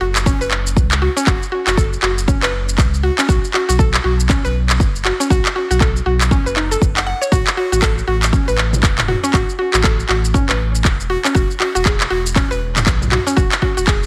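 Earthy and warm, this afro house excerpt moves at 119 BPM in 4/4 with a 60% swing on the sixteenths, tuned to A4 = 438 Hz. A woody, mallet-like FM synth pluck carries bright arpeggios up front with chorus, digital delay and sidechain pumping, over a round sine sub bass that carries tube saturation and also pumps. An up-front house kit of handclaps, shaker and toms with a small-room character enters at 0.2 seconds, a punchy layered electronic kick joins at 0.3 seconds, and the harmony moves from F#5 through B5 and A5 to Esus2 at 11.4 seconds, set in light reverb and digital ambience.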